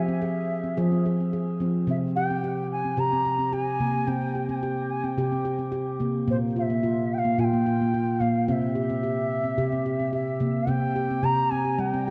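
Hypnotic and gentle, this short cut from a longer world meditative piece moves at 109 BPM in a straight 4/4, tuned slightly high at A4 = 441 Hz and opening on an F minor chord. Up front, a ringing nitrided-steel handpan plays arpeggios with sharp finger strokes under a shimmer reverb, while a reedy, pure bamboo bansuri carries the melody with vibrato and crisp attack, its tone set distant in shimmer reverb and diffuse ambient delay. The dark, warm production sits in a wet recital-hall reverb with small-room ambience, and a new section arrives at 10.7 seconds.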